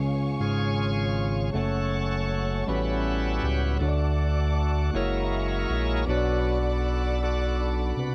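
A lightly reverberant home cassette recording carries this solemn, soulful slow gospel excerpt in 6/8 at 53 BPM, where a bell-like tine electric piano and warm, bowed studio strings hold the harmony from the start over a dark, up-front synth bass with vibrato, and a full, shouting tonewheel organ with key click and slow rotary speaker enters at 0.4 seconds to take the solo through chords that move from C#7 to F#m, A13, D, F#7 and Bm.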